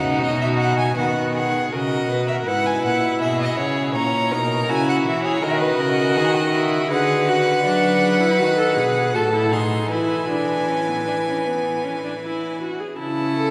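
Classical baroque-style fugue for string quartet at a stately, elegant 80 BPM in 4/4, heard as an excerpt from a longer piece. An up-front first violin carries the smooth, even melody with vibrato, while a more distant, focused second violin and a focused viola weave the inner lines. An expressive cello, also up front, anchors the bass with portamento. All four bowed voices are rich, and the harmony moves from B through darker diminished and minor chords toward E, then A/C# at 13.0 s, all bathed in a long, wet cathedral reverb.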